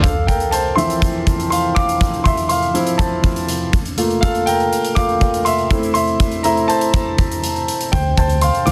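Piano-driven pop at 122 BPM in 4/4, cut from a longer piece, with a dramatic, bittersweet mood as a clear, polished concert grand carries the music from 0.0 s through a Dm7, Gm7 and Am progression, its deep bass and long sustain sitting up front. A huge arena drum kit plays hi-hat and a punchy, softly clipped kick in a big room. A dark, round, foam-muted fingered electric bass arrives at 7.9 s on a returning Dm7, all under light reverb and a dense, heavily limited modern master.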